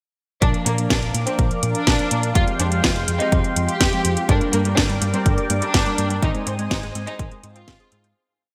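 Nostalgic and bittersweet, this short italo disco piece moves at 124 BPM in a straight 4/4, running through a single verse over Bb, Fmadd9, Gm and Ab before fading out from 5.6 seconds. A lush, expressive symphonic violin section carries a repeating riff melody with vibrato and a soft attack, its smooth top touched by delay, while a detuned sawtooth pad holds sustained chords beneath, shimmering with chorus and a moving notch. Mellow synth brass adds dotted-rhythm chord stabs in drop2 voicing, brassy yet dark, colored by chorus, phaser and a gritty vintage sampler edge. A round, amped hollow-body electric bass plays an octave-jumping line under a punchy, tape-warm four-on-the-floor electronic kick and an up-front house kit with cracking snare and metallic closed hats. From 4.3 seconds an analog pluck joins in the background with an eight-step arpeggiated sequence, its detuned, ring-modulated tone bright with chorus and delay. 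The whole sits in a moderate digital hall reverb with a bright 1980s-style digital sheen.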